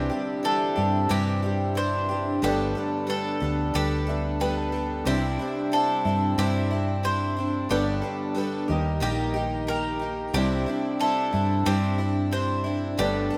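A bright, shimmering twelve-string acoustic guitar with fresh strings and audible finger squeak strums an accompaniment in this anthemic folk fragment at 91 BPM, joined up front by a round, hollow-body electric bass and a double-strung mandolin picking arpeggios. A reedy, breathing pedal harmonium holds sustained chords, while a dark, woody upright piano sits in the background and adds a fill from 3.7 to 5.1 seconds. A barely audible fingerpicked steel-string guitar drops out after 2.4 seconds as the chords move between Cadd9 and Gadd9, with an Eb passing through, all in a rough home-demo mix with light small-room reverb.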